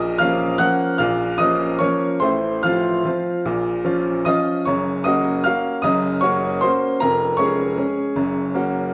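A clear, woody upright piano carries this short classical waltz alone from 0.0 to 8.9 seconds, its smooth, vintage tone sitting up front with long sustain. The piece moves in 3/4 at a flexible 134-162 BPM, with rubato giving the dance a bittersweet, nostalgic sway. Set in Bb minor and tuned to A4 = 441 Hz, the playing spans from F1 up to Gb6, drawing on both deep bass and high treble. The harmony passes from Bbm through F/A and back to Bbm, then settles toward Gb, Db/F and Gb again near the close. A moderate recital hall reverb of 1.3 seconds surrounds the instrument, and the fragment is cut from a longer piece.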